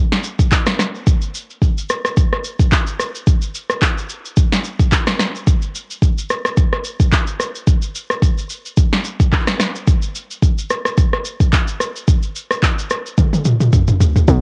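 This home recording sits on cassette, with light reverb. It is a deep, hypnotic amapiano passage cut from a longer piece, moving at 109 BPM in 4/4 with a gentle swing on the sixteenths and tuned slightly sharp, to A4 = 441 Hz. An electronic, layered deep house drum kit carries almost the whole stretch from 0.1 seconds, placed up front. Its deep kick and punchy snare sit among handclaps, rim click, shaker and toms, and the kit has a roomy grit from being re-recorded in a small space and run through tape. A drum fill arrives at 13.2 seconds, and at 14.3 seconds a tight, up-front log drum bass lands on a low B. That bass is a percussive FM tone with a fast attack, a noise layer and a decaying tail.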